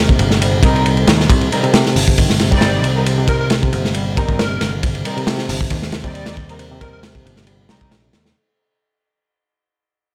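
A reedy electric piano riff with fast tremolo and tape echo opens this gritty, swaggering breakbeat excerpt alongside a growly picked electric bass, while a crunchy, saturated drum kit of tight kick, medium-tuned snare, hi-hat and ride cymbal sits up front in a small room. Dark, lush symphonic strings add bowed stabs with vibrato and tape echo from 0.6 s, and a plucky, detuned square-wave unison lead carries a catchy melody in the background from 3.3 s, its filter sweep colored by cassette tape and a small-speaker sound. The short cut is a drop in straight 4/4 that fades out from 1.3 s on.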